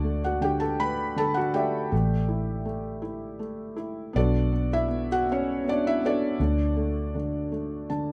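Hopeful and heartfelt, this short acoustic folk-pop ballad moves at an unhurried 80 BPM in a gentle 3/4 with a straight feel, set in D major and cut from a longer piece. A felt-muted upright piano carries the melody across a range of D3 to B5, its soft, mellow tone sitting up front and intimate, with the natural action noise of the instrument clearly audible. Beneath it, a vintage electric bass played with the fingers and muted with foam holds the low end between A1 and D2, sounding dark, round and amped. The harmony moves from D through A7sus4 and Bm7 before settling back on D at 6.4 seconds, and the piano adds a brief fill from 7.5 to 8.1 seconds. A light reverb gives the pair a modest sense of space.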